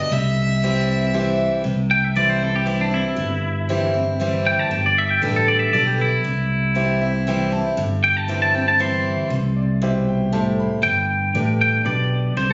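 A brief, biting fiddle phrase opens this easygoing, down-home honky-tonk waltz at 118 BPM in C major, over brilliant grand piano, full-bodied picked acoustic guitar and a round, punchy fingered electric bass. At 1.9 seconds a twangy, clean electric guitar with tape echo takes the lead up front, and the piano adds fills at 6.8 and 9.3 seconds. The sound is that of a phone in the room, with light reverb, compression and a capped high end, cut from a longer piece.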